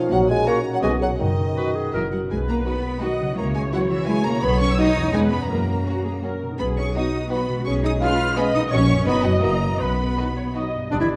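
Playful and mischievous, this whimsical cinematic film cue skips along in a brisk 3/4 at 167 BPM in B major, with a woody, round marimba on soft mallets carrying the melody alongside a smooth violin section, while a second, clearer violin section sits in the background and a distant viola section, ringing concert harp arpeggios and a lush cello and double bass foundation keep the music moving. A hollow flute ensemble, mellow bassoon, bright clarinet and oboe color only the opening seconds before returning briefly at 10.9 s, as a very quiet horn section holds sustained chords from 0.5 s under a moderate scoring-stage reverb. This short passage is cut from a longer piece.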